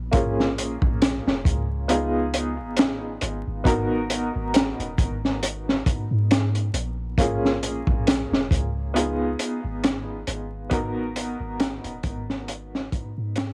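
A woody, up-front upright piano, colored by tremolo and a cassette-tape sheen, opens this melancholic, brooding trip hop excerpt alongside a soft 808-style bass whose deep, round sine tone has a fast attack and a decaying tail. A crunchy breakbeat kit enters at 0.1 s with punchy kick, high-tuned snare and hi-hat; it sits up front, gritty and saturated, with a rolled-off top, and swings its sixteenths over a slow cycle of minor seventh and dominant chords. Small-room ambience, the feel of a home cassette recording and vinyl crackle surround the music as it fades out from 8.4 s to the cut at 13.5 s.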